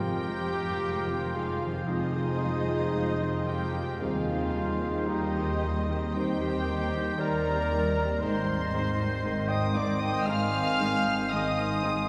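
Classical orchestral music in a slow, romantic vein, this short excerpt from a longer movement feels elegiac and solemn, moving with a flexible, rubato pulse in four. A lush violin section carries the smooth, vibrato-rich melody high above the orchestra, while a second, darker and very quiet violin section sings a lower expressive line beneath it. Woodwinds weave further second lines: an airy, crisp-edged concert flute with a straight tone, a clear oboe holding its note with light vibrato, and a very quiet, shadowy clarinet. In the background, a mellow bassoon and a rich viola section with gliding portamento fill out the accompaniment, a loose French horn section holds soft-attacked chords, and a close-miked trumpet adds stabs. The cellos and double basses anchor the bass with bowed, vibrato-laden tone, and the harmony passes from Fm7 through Cm/Eb to Ab, all heard from further back in a cathedral-like space with a long, wet reverb tail.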